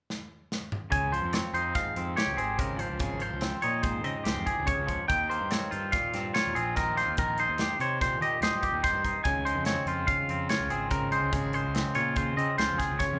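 A warm, clean twangy electric guitar plays picked arpeggios up front in this intricate math rock and midwest emo excerpt at 144 BPM in 5/4, entering at 0.9 seconds alongside a second bright, clean twangy guitar playing chordal accompaniment. The chords move from Dbmaj9#11 to Eb13 at 5.1 seconds and then Dbmaj9, underpinned by a dark, round fuzz bass with overdrive. An airy, polished studio drum kit with a tight kick and medium-tuned snare opens with a short fill before the band enters, all heard as a band playing live in one room with a moderate large-studio reverb.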